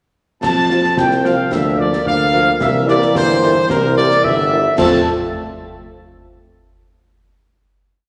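A festive, proud military-style march for wind band in 2/4 at 110 BPM in F major opens at 0.4 s with a bright trumpet section up front carrying the melody, soft-edged woodwinds doubling the tune in unison and at the octave, dark, distant trombones holding sustained chords, a warm, roomy tuba playing bass on the beats, and a marching snare over a bass drum on the beat with dark clash cymbals; mellow French horns join at 0.7 s with after-beat and sustained chords, and the whole band, set in a wet scoring-stage reverb, settles on a final F chord at 4.8 s.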